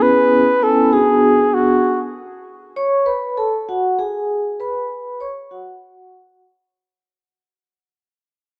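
A breathy flugelhorn opens this smoky, mellow hip hop fragment, cut from a longer piece, singing a short jazz-style line with scooped notes, vibrato and a smooth top before it drops out at 2.0 seconds. Beneath it, a vibraphone played with soft mallets carries the accompaniment, its metallic, ringing tone shaded by a slow motor vibrato and a vintage, band-limited character. From 2.1 seconds the vibraphone carries on alone as the music fades out, moving through chords such as Bsus2, F#madd9 and C#5 before the harmony falls away. The groove sits at 98 BPM in 4/4 with a lazy swing on the sixteenths. Both instruments sit up front in a moderate plate reverb, and the dark, warm production keeps the top end rounded off.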